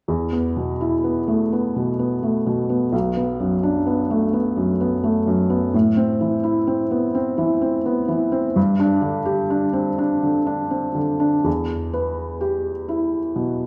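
Set up front in a wet recital-hall reverb, a felt-muted upright piano with a mellow, intimate tone and short sustain plays a melancholic, longing classical accompaniment in E minor at a rubato 42 BPM in 6/8, tuned to A4 = 441 Hz, moving through Bm7, Am and G before settling on Em at 11.5 seconds in this brief cut from a longer piece.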